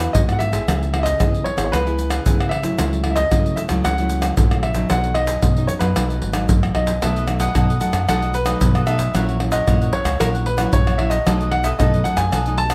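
A baby grand piano with a natural, short-sustained tone carries the melody in this sunny, playful samba and choro passage, over fingerpicked classical nylon-string guitar, a dark, round, punchy fingered electric bass, and up-front percussion of egg shaker, deep surdo, pandeiro and tamborim played with soft hands in a live room, while a crisp picked cavaquinho joins at 7.0 s, and light reverb gives the mix a gentle sense of space.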